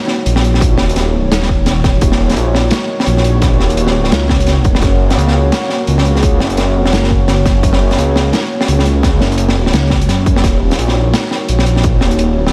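A deep, rumbling detuned saw bass enters at 0.3 s and sits up front in this dark, spacious half-time drum and bass excerpt. It follows a crunchy, saturated breakbeat kit of hi-hat and medium-tuned snare with a rolled-off top that begins at 0.1 s, and a heavy electronic kick joins from 0.6 s. All of it rests over a moody analog pad, present from the start, whose slow-attack sustained chords carry chorus, 12-bit sampler grit and sidechain pumping through Ebm7 and Gb in a small, lightly reverberant room.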